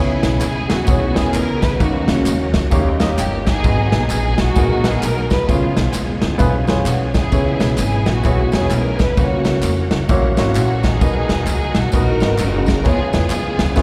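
Uptempo gospel at 130 BPM in a swung 4/4, jubilant and soulful, with lush, expressive bowed strings carrying the melody with vibrato and portamento over an intimate baby grand piano whose action noise is audible, both touched by slapback echo. A bright, shouting tonewheel organ sits in the background with sustained chords through a slow rotary speaker, light overdrive and chorus vibrato, while a woody, growly upright bass sits up front. From 0.2 s a tight-kicked acoustic drum kit with snare and ride joins alongside tambourine and group handclaps, all heard as a live gig through the venue's PA with recital-hall reverb, moving through chords such as C#m7, G#m7 and Bmaj7 in this fragment of a longer piece.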